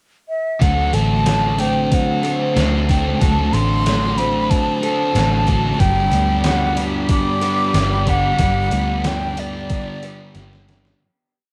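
Hazy and blissful, this short shoegaze and dream pop piece moves at 92 BPM in a straight 4/4 in G major, tuned slightly flat, with a cassette-tape home-recording feel and little room reverb. A breathy concert flute opens on the pickup with a vibrato-laden, tongued, motif-based melody in sentence-like phrases, sitting high from D5 to D6. From 0.6 seconds a gated 80s digital drum machine sets a big rock groove with a thumpy kick and overdriven gated-reverb snare, while a round, foam-muted fingered electric bass plays a dotted figure and a thick fuzz guitar strums distorted, chorus-soaked chords with whammy-bar dips. In the background, an overdriven electric guitar rings out compressed chords through reverse reverb, and a picked twelve-string acoustic guitar adds shimmering, octave-doubled arpeggios with finger squeak, lush chorus and analog delay. The harmony rests on D7 before settling on Gmaj7 at 5.8 seconds, where a silky, detuned sawtooth string pad with a slow attack joins in the background. 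The piece fades out from 8.4 seconds as a drum fill closes it.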